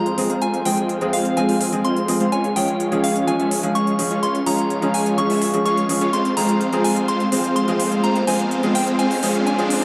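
Euphoric and anthemic, this festival progressive house build-up in F minor moves at 126 BPM in a straight 4/4, taken from a longer piece. Up front, huge detuned supersaw chords carry the riff through a low-pass filter sweep that runs the whole passage, while a soft, pure synth bell sings the melody high above, warbling with chorus and tape echo. A mellow felt-muted upright piano gives intimate accompaniment, and a very quiet lush unison pad holds sustained chords, bright with chorus and phaser. Underneath sits a thick, menacing, saturated saw bass, very low in the mix, and crisp, tape-warm electronic hi-hats come in at 0.1 seconds. The harmony moves from Fm to Db and back to Fm, an electronic riser joins in the background at 7.5 seconds, and a lush hall reverb wraps the dark, warm production.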